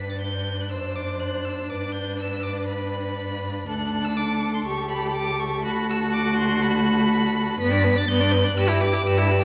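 Lively and cheerful, this quick classical-period string quartet movement in G major at 122 BPM sets a clear, focused first violin singing a vibrato melody high above a smooth second violin and an even viola accompaniment, while an up-front cello anchors the bass with soft-attack portamento, all bowed in a reverberant recital hall as the harmony moves from G through D7/F# and A7/C# toward Em/G by 8.6 seconds.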